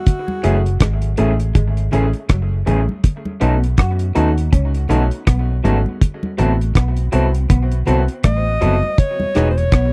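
A clear, close-miked alto saxophone opens this sweet, tender lovers rock excerpt at 81 BPM, its soft-attack jazz phrasing steeped in vibrato and tape echo, before it returns at 8.3 seconds over a swung sixteenth-note feel and chords moving from F#m9 through B7 and Am6 to Emaj7. Underneath, a muffled, saturated reggae kit of tight kick, hi-hat and rim click sits up front with a round, punchy foam-muted bass. Thick-skinned congas, a long-sustaining grand piano with tape echo, and two slightly broken-up guitars through a small old amp (one playing a riff with spring reverb and echo, the other compressed stabs in the background) fill out the groove, and a mellow tonewheel organ with key click and rotary speaker surfaces very quietly at 9.2 seconds in this dry, close 1970s-style studio recording.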